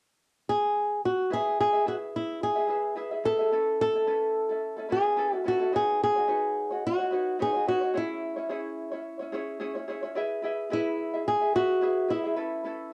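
Pop at 108 BPM in E major with a light 16th-note swing, heartfelt and carefree, opens with a warm, fingerpicked flamenco guitar melody up front from 0.5 seconds, its fresh strings ringing and finger squeaks audible, joined at 1.3 seconds by a light, fingerpicked ukulele accompaniment over chords moving through E, Aadd9, Badd9 and C#m, both colored by cassette tape in a homey recording with moderate studio reverb, in a short cut from a longer piece.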